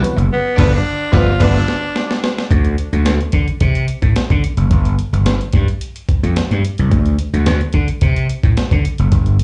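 A straight 4/4 funk groove struts with energy as a compressed, thumpy sampler-style breakbeat kit and a growly, punchy slap bass sit up front, while a wah-tinged overdriven semi-hollow guitar accompanies and a key-clicking percussive tonewheel organ stabs in the background until 1.6 s, a raspy, forceful tenor saxophone carries the melody until 2.2 s over a mellow, octave-doubled horn section, and a band accent and drum fill lead into a new section at 2.5 s where drums and bass carry on together, the whole band heard as a live gig through the venue's PA and cassette tape with a dulled top end.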